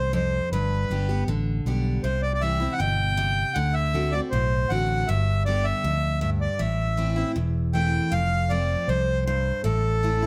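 Accordion, picked steel-string acoustic guitar and fingered electric bass start together in this down-home, easygoing honky-tonk and classic country excerpt, with the reedy, dark, smooth accordion carrying the melody up front over bright, full-bodied guitar accompaniment with audible finger squeak and a round, amped bass, captured close and detailed in light reverb.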